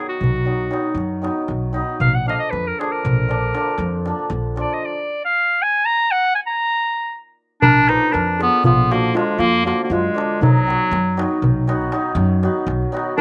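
A dry, open-air sound with barely any reverb carries this bittersweet, virtuosic cut of Balkan wedding-band folk, racing at 236 BPM in a straight 11/8 in B-flat Phrygian dominant. A bright, vintage-toned clarinet sits up front and plays a classical-style solo melody through the first 7.6 seconds, over a ringing hammered dulcimer with slapback echo, a woody, thumpy pizzicato upright bass on gut strings, and a warm clay-shell darbuka. At 7.6 seconds a metallic, shimmering steel pan joins as a close-miked second line.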